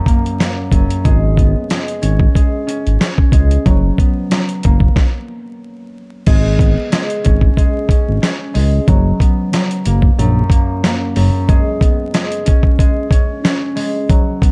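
A swung boom-bap groove at 92 BPM drives this reflective, gritty hip-hop excerpt, with a compressed, sampler-style kit putting a thumpy kick and fat snare up front alongside hi-hat and crash, and a brief stop at 5.0 seconds. A fingerpicked concert harp rings out over F#, G#m and F#sus4 changes with a cassette-tape tint, while a smooth sawtooth-and-square synth bass glides in at 0.7 seconds and drops out at 11.3 seconds. Vinyl crackle and digital ambience give the production a dark, warm finish.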